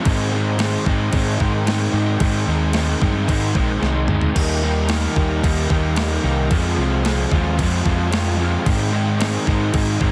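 A straight 4/4 pulse comes from a crisp, thumpy 8-bit drum machine with overdrive, sitting up front with a medium-tuned snare and a brief fill between 3.8 and 4.4 seconds, while a round, punchy hollow-body bass anchors the low end. Two picked electric guitars each carry a riff: a dark, semi-hollow one up front and a lo-fi garage one with lush chorus and slapback echo, both carrying overdrive. In this cool, restless indie rock excerpt, a very quiet, gritty tonewheel organ with key click and fast rotary speaker holds sustained chords over a dense, heavily limited master as the harmony moves from Abmaj7 through Ebadd9 and Fm7.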